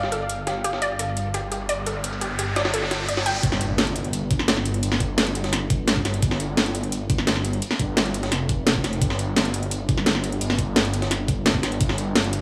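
Steeped in a lush hall reverb, this futuristic, aggressive cut from a dark technical drum and bass track opens with a moody analog pad and a wave-folded unison pluck arpeggio over a thick detuned saw bass, a gritty pitched-up jungle sampler-style kit and an up-front drum and bass kit with cracking snare and metallic hats, while a riser from 1.4 s leads into an impact and drop at 3.4 s, where the pad and pluck stop and an overdriven, knocking electronic kick drum enters.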